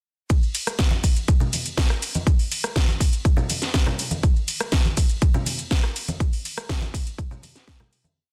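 A punchy electronic kick drum sits up front from 0.3 seconds, driving a four-on-the-floor pulse through this short, sensual and groovy nu-disco piece in straight 4/4. Alongside it, a layered house drum kit supplies a disco backbeat with a cracking snare, metallic hats, ride cymbal, rim click and shaker, its tape-tinged sound re-recorded in a small room. Low-tuned congas join at 0.9 seconds, played with soft hands in a live room, their thin skins giving a bright, acoustic edge against the produced drums. The whole piece is a drum-driven drop with little reverb and a dense, heavily limited modern master. A fade-out begins at 5.5 seconds and carries the groove to its close.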